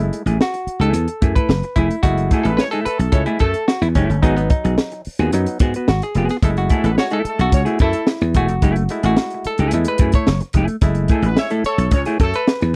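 A twangy, stringy clav takes the solo through this sly funk cut from a longer piece, backed by a clean semi-hollow electric guitar, a growly, foam-muted thumbed slap bass up front, and a compact cocktail kit with a high-tuned snare and punchy kick, while a clear vintage horn section with light vibrato adds a second line from 2.3 seconds over F#m9 and G#m7 chords in a dry, close 1970s-style studio sound.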